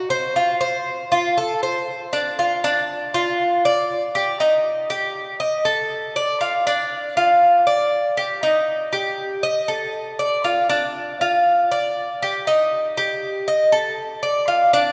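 A solo Cuban tres, picked and up front, rings out with a warm metallic tone from its doubled and partly octave-paired strings in this sunny, danceable Latin excerpt cut from a longer piece, moving from a brief opening phrase into a longer passage at 2.4 seconds while a wet church reverb with a 3.2-second tail fills the hall around it.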